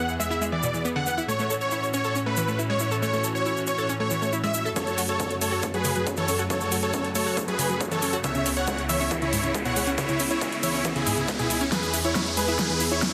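Lush detuned supersaw chords carry the melody up front over bright, earthy chamber strings with vintage sampler grit and a warbling, round analog pluck arpeggio with chorus and tape character, all pumping to the sidechain while a grainy egg shaker ticks in the background, until at 4.8 seconds a punchy electronic kick and an overdriven dance kit with a huge snare and metallic hats launch a build-up, joined by a distant riser at 7.0 seconds and a drum fill at 11.7 seconds, giving this bittersweet, soaring uplifting trance excerpt a dense, heavily limited finish.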